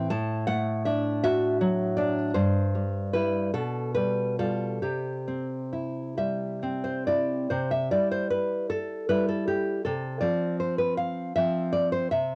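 This home recording on cassette has an intimate, close feel, with a light reverb around a single nylon-string guitar that sits up front. It is a romantic piece for solo classical guitar, passionate yet private in mood, unfolding in 6/8 with a free, rubato pulse. The fingerpicked acoustic guitar has a warm, classical tone and spans from G2 up to A5 across the 12.4 seconds. The harmony moves from D over A through C over G and G7 over B to settle on C by 4.8 seconds. The opening phrase returns at 7.5 seconds, later resting on an F5 chord over C at 9.8 seconds, in what is a short cut from a longer piece.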